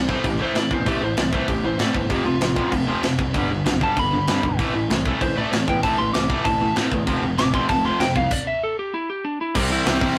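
An angry, raw punk rock fragment opens at 0.0 seconds with a dark, slightly broken-up lead guitar soloing up front over two bright, distorted rhythm guitars, one scooped and compressed, and a growly fuzz bass, all sitting in the background. A tight, gritty drum kit with a medium-tuned snare and a rolled-off top punches up front as the chords cycle through A minor, F and G. The band hits a stop from 8.3 to 9.6 seconds before landing on C, all captured with a rough rehearsal-room sound, saturated and set in a small, moderate room reverb.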